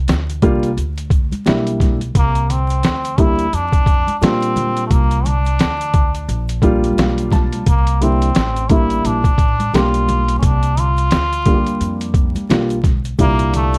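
Relaxed and cool, this jazz-hop excerpt at 87 BPM with a 16th-note swing sits in C mixolydian on a C9sus4 chord. It sets a woody pizzicato upright bass and very quiet, close tube shaker and congas under a gritty, thumpy, pitched-down sampler-style boom bap kit with vintage 12-bit grit, while a dark, mellow upright piano accompanies up front and adds a fill at 6.6 seconds. From 2.2 seconds a buzzy, metal-muted trombone solo carries the melody with slapback echo, all wrapped in light reverb, dark production and vinyl crackle.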